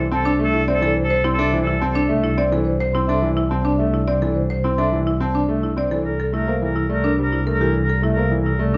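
Minimalist classical pattern music in 3/4 at 106 BPM, bright and hypnotic, this excerpt sets buzzing, woody marimba arpeggios struck with hard mallets and a clear, open concert grand piano accompaniment over a rich, smooth bowed double bass holding a low C, while a mellow vibraphone with soft mallets and slow motor vibrato carries the ringing melody and a distant, lightly vibrato-tinged oboe adds a second line until 2.4 seconds and returns at 6.1 seconds as the harmony moves from Am/C to C7, all in a moderate large studio reverb with a dark, warm production, tuned slightly flat at A4 = 436 Hz.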